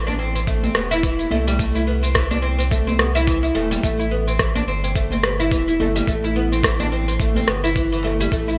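Organic downtempo at 107 BPM in A minor, this mystical 8.6-second clip from a longer piece holds on an Am7 chord with a swung sixteenth-note feel. Up front, a bright, woody, plectrum-plucked oud plays delayed arpeggios over a round sine sub bass that pumps under sidechain, while a gritty, thumpy sampler-style kick enters at 0.5 seconds. Electronic shaker and rim click with gated reverb sound alongside a very quiet, distant djembe rattling with metal, all set in a moderate plate reverb and a bright 1980s-style digital production.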